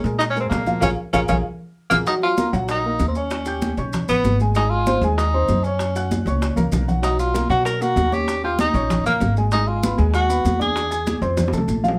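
A moderate small-room reverb gives this Afro-Cuban jazz clip, cut from a longer piece, an intimate, close feel, with the upright bass and tenor saxophone up front. The mood is driving and sultry, set in a straight four. The mellow tenor saxophone carries the solo melody in a subtone, with scooped notes and a punchy yet distant, roomy jazz voice, until it drops out at 11.2 seconds. Beneath it, the upright piano comps with a slightly detuned, natural tone and audible action noise. The pizzicato upright bass on steel strings sounds dark and thumpy. The percussion mixes bright, thin-skinned, high-tuned congas with tight, soft-handed bongos set in the background and grainy, band-limited maracas with a vintage character, and a band accent and drum fill close the opening passage at 2.1 seconds before the harmony moves through a colorful run of seventh, augmented and major-seventh chords.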